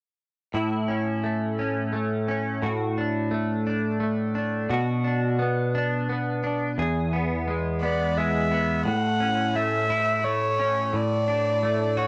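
A warm, airy erhu enters at 7.8 seconds with vibrato and portamento over a bright, twangy, double-tracked clean electric guitar that accompanies from 0.5 seconds in this tender, romantic pop piece in A major, set in a slow 6/8 at 58 BPM and captured in a dry, close 1970s-style studio sound with light reverb.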